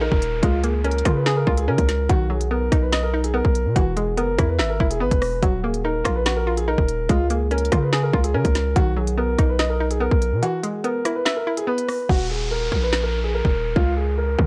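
A dark, boxy concert grand piano carries the melody over a hollow, nasal square-wave pluck with chorus, a punchy sine 808 bass with a noise layer, and a falling downlifter, opening this cold, half-time drill excerpt in Eb minor at 144 BPM. The up-front electronic drill kit brings a hard-clipped kick, woody snare, crisp hats and rim clicks, while chords move through Db6, B, E and Ebmadd9 in a digital ambience, captured as a dry, gritty hardware recording with cassette-tape character. A break arrives at 10.4 seconds, then the pluck stops at 12.1 seconds as the hi-hats drop out and the downlifter returns for the closing stretch over Eb5 and Db6.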